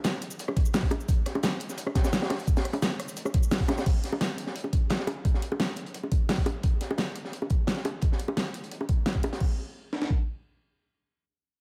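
A sampler-style breakbeat kit, pitched up and compressed with a thumpy kick and high-tuned snare, drives this lush, dreamy drum and bass excerpt at 173 BPM, layered with a fat-snared electronic pop kit carrying cabasa, crash, hi-hat and rim click, a dark, saturated acoustic breakbeat kit of hi-hat and snare with a rolled-off top, and tight, close bongos from 0.5 s, all set in light small-room reverb.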